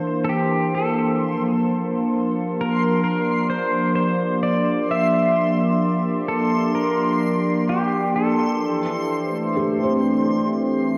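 This ambient piece opens with a pedal steel guitar carrying the melody and a warm analog pad holding sustained chords, both up front, while a backwards swelling texture hangs above on a single high C6. The mood is reflective and spacious, moving at a slow 65 BPM in straight 4/4 in G dorian, and the harmony passes from C13 to Gm7 at 1.2 seconds and on to Am7 at 8.6 seconds. The clean electric pedal steel, played with fingerpicks, uses slide and volume swells and sits in tape echo, drifting between G4 and E5 until it stops at 10.0 seconds. Alongside it the pad warbles with a detuned, vintage sawtooth-and-sine character, while the reversed, granular texture adds a dreamy haze through its own reverb. At 9.6 seconds a felt-muted upright piano slips in from the background with soft, dark arpeggios, its thick felt and audible action noise giving an intimate touch under tape echo. A wet spring reverb with a 2.9-second decay fills the echo-heavy mix of this short passage cut from a longer piece.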